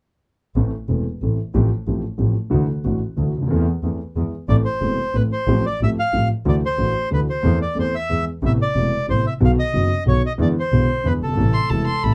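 A reedy, airy bandoneon carries the melody, sitting up front and entering at 4.5 seconds over a melancholic, sultry tango in 3/4 with a loose, rubato feel. From 0.6 seconds, an intimate concert grand piano plays the accompaniment up front, with deep bass and audible action noise. Beneath it, a single bowed double bass holds the low line with a clear, focused tone and vibrato. Just before the close, at 11.5 seconds, a single up-front violin adds a second line, rich and a little boxy, bowed with vibrato and expressive portamento. The harmony circles a minor home chord through add9 colours and a dominant seventh, all set in a moderate booth ambience with a dark, warm production, in this excerpt cut from a longer piece.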